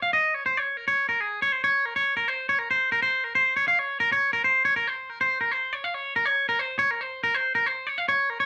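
A twangy electric guitar opens this short cut from a longer rock piece, playing alone from 0.0 to 8.5 seconds. Its clean, picked tone sits up front in a small room, with a light reverb adding a little space. The tempo is 139 BPM in an uneven 5/4 metre with a straight feel, and the instrument is tuned to A4 = 441 Hz. The line stays in a high register between Ab4 and F5, giving the music a bright, intricate character. A brief opening passage gives way at 1.6 seconds to a longer second section that carries the solo guitar through to the end.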